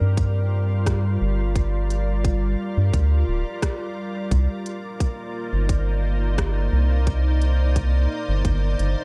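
Ambient dub in C minor at 87 BPM with a light 16th-note swing, this meditative, deep excerpt sets a round, up-front analog bass under a pure, organ-like pad that holds evolving, chorused chords from Gm7 to Cm9 at 4.3 seconds, while a tight, tape-warm electronic kick and a quieter kit of crisp hi-hats and rim clicks, carrying dub echo, enter at 0.2 seconds in a dark, dry production.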